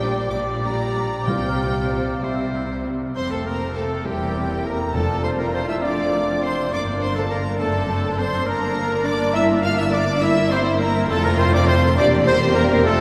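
A rich chamber violin section carries the melody high above this quick, lively and graceful classical-period movement for symphony orchestra, a fragment cut from a longer piece in F major that moves in a rubato 6/8 at 68 dotted-quarter beats per minute. Second lines come from a bright, close-miked oboe, a hollow, airy large flute ensemble, a very quiet, focused second violin section and a warm clarinet. A distant viola section and a present bassoon fill out the accompaniment. A mellow French horn section holds punchy sustained chords and a faint trumpet adds stabs, over a clear, lush cello section and an expressive double bass section in the bass. Timpani struck with hard mallets on calf heads sound close, dry and articulate between 1.3 and 5.8 seconds. A long cathedral reverb sets the orchestra further back in the room, while the harmony passes from G minor over B-flat through C and F, turns to G minor, and returns toward F.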